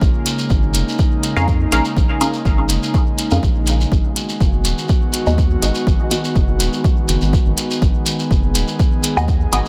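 A punchy electronic kick sits up front at 123 BPM in 4/4, with a light 16th-note swing, as this deep, hazy dub techno excerpt in G# dorian moves from A#m7 to G#m7 at 3.9 seconds. A smooth electronic hi-hat joins at 0.3 seconds, and a grainy, mellow shekere adds a quiet acoustic texture beneath it. A round analog bass with tube saturation holds down the low end, dark and sustained, pumping against the kick along with an airy, breathy pad that holds soft chords through chorus. A muted, detuned chord stab runs through a filter pluck, phaser and dub echo, sounding from 1.4 to 6.2 seconds and returning briefly at 9.2 seconds. Light reverb and digital ambience wrap the mix in a hazy space.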